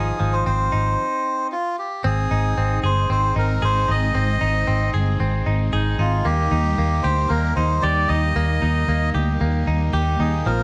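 A steady, straight 4/4 pulse carries this bright, youthful indie pop excerpt, cut from a longer piece, with a brief stop between 1.0 and 2.0 seconds before the second section opens. Up front, a vintage muted fingered electric bass gives a dark, round, punchy foundation with a foam-muted, amped tone. A melodica carries the melody in a reedy, breathy, nasal voice with an airy, plastic-case character and a slapback echo. Beneath it, a direct-recorded clean electric guitar plays picked arpeggios that sound twangy and compressed. From 2.0 seconds a string machine ensemble adds lush, sustained sawtooth chords in the background, with a sub octave, soft attack, phaser and ensemble chorus. Light digital reverb gives the whole mix a gentle sense of space.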